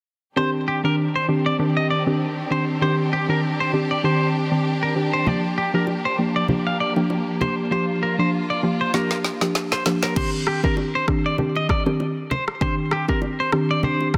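Mellow and smooth, this afrobeats excerpt moves at 98 BPM in 4/4 with a gentle swing on the sixteenths, cut from a longer piece. A soft, round pluck with a dark, detuned, chorused tone carries the accompaniment up front, while a bowed studio string section holds sustained chords with vibrato and portamento until about 10.1 seconds. A clean, twangy electric guitar plays a picked riff higher up, coloured by spring reverb and delay. Bright, close congas and bongos join at 5.3 seconds, and at 8.9 seconds a layered electronic deep house kit arrives with a drum fill, bringing a deep kick, a woody snare with soft clipping, rim clicks and crash cymbal. The harmony shifts between Cmadd9 and Gm7 before returning to Cmadd9 as a new section begins at 10.2 seconds with the hi-hats muted. Light digital ambience surrounds a dense, heavily limited modern master.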